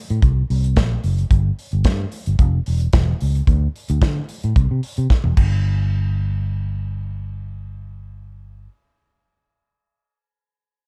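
A dry, dark-sounding mix opens this driving, danceable disco passage at 110 BPM in a straight 4/4, cut from a longer piece. A growly, round fingered electric bass sits up front alongside a punchy acoustic studio drum kit with bright cymbals, a medium-tuned snare, hi-hat, crash and toms. A drum fill from 5.1 seconds leads into the next section, where the drums drop out at 5.5 seconds and the bass carries on alone until 8.7 seconds.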